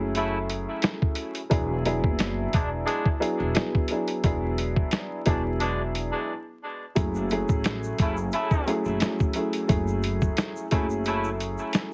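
A dark, worn upright piano and a woody pizzicato upright bass open this tough, brooding boom-bap hip-hop excerpt in F# minor at 88 BPM, joined at once by a muffled, thumpy sampler-style drum kit with a light swing and by vintage jazz horn stabs carrying light vibrato, filtering and delay, as the harmony moves from F#m7 to E7. The slightly detuned piano rings with long sustain and audible action noise through a cassette-tape coloring, while the mix as a whole carries vinyl crackle, light reverb and a heavily compressed radio sound. After a brief break at 6.3 seconds, the chords return to F#m7 at 7.0 seconds as a grainy egg shaker enters in the background.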